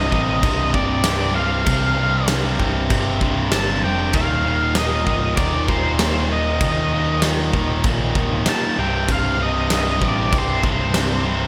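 A straight 4/4 beat from a big, natural-sounding rock drum kit with bright cymbals, a punchy kick and crashes drives this dark, cathartic quiet-loud alternative rock excerpt, where a cranked stack guitar in the background and a tight distorted guitar share the low riff over a growly, overdriven picked electric bass, while an octave-fuzz lead guitar carries the melody through slapback and tape echo inside a lush hall reverb that gives the mix its arena-sized scale.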